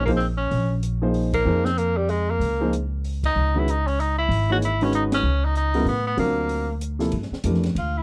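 Modal jazz in a swinging three, cool and spiritual in mood, this short cut from a longer piece has a clear, vintage-toned tenor saxophone carrying the melody up front with vibrato. It is backed by a natural-sounding baby grand piano with short sustain, a woody, dark pizzicato upright bass and a softer acoustic drum kit with dark cymbals, a high-tuned snare and a boomy kick. The whole band hits accents at 1.3, 3.2 and 5.1 seconds over minor eleventh harmonies moving toward an altered dominant, all captured in a dry, close 1970s-style studio sound with a small room reverb.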